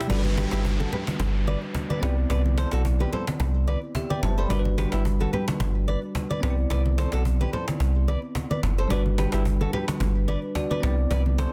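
Romantic and joyful, this afrobeats excerpt in G major at 109 BPM, with a light 16th-note swing, rides a round, deep sub bass up front beneath a bell-like tine electric piano with analog chorus, a fingerpicked flamenco guitar riff with audible finger squeak and digital delay, a woody cajon with faint snares, and damped, low-tuned congas in the background, while an electronic downlifter runs from 0.1 to 4.5 s over chords alternating between Gmaj7 and Cmaj9, all in a small room with a dense, heavily limited modern master.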